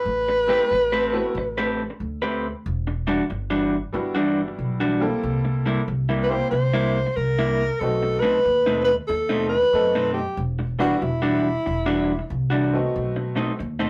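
A rough rehearsal-room recording with moderate ambience and warm saturation frames this smoky, soulful electric blues shuffle, cut from a longer piece. An intimate, whispered tenor saxophone sits up front with vibrato, scooped notes and a soft attack, sounding briefly at the start and returning from 6.2 to 12.3 seconds, while an electric guitar through a small old amp plays a slightly broken-up, compressed picked riff. Beneath them, a bright, brilliant upright piano supplies polished accompaniment, and a pizzicato upright bass with steel strings adds a dark, woody low end over ninth and seventh chords.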